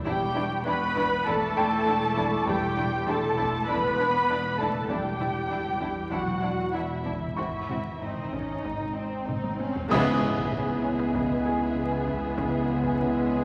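Bathed in a wet scoring-stage reverb with a faint vinyl crackle, this mysterious, eerie suspense cue at 98 BPM in E minor opens on a deep, rumbling, detuned synth drone, a clear, intimate baby grand piano with audible action noise, veiled con sordino violin sections carrying the melody, a second line and a high texture, muted violas, a very quiet studio cello riff, cello and double bass sections holding the bass, and hard-stick taiko in the background, until a quiet electronic swell from 8.9 s and a drum fill lead to a band accent at 9.9 s, where the key shifts to C# minor as mellow French horns and distant trombones sustain chords over timpani, bright clash cymbals with concert bass drum, and an electronic impact.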